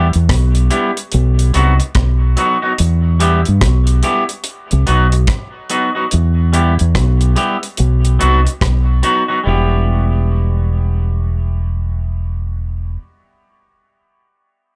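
A bright, twangy clean electric guitar with dub echo and a dark, round, punchy fingered electric bass open this serious, hypnotic roots reggae excerpt at 72 BPM in E minor, swinging over an Em–B vamp, while a dry acoustic drum kit with tight kick, hi-hat and rim click plays until 9.3 seconds and leaves guitar and bass to carry on in light reverb.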